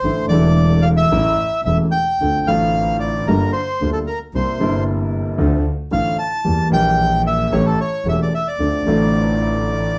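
A rubato 4/4 pulse around 112 BPM carries this sultry, dramatic tango in D minor, moving through a brief minor progression that settles on Dm7 at 8.6 seconds. A reedy, bright bandoneon leads the melody, close-miked, dry and up front, while a boxy concert grand piano with deep bass and long sustain supplies the accompaniment. Beneath them, a single bowed double bass plays expressively with vibrato, portamento and a soft attack, and the trio sounds live in one room under moderate studio reverb.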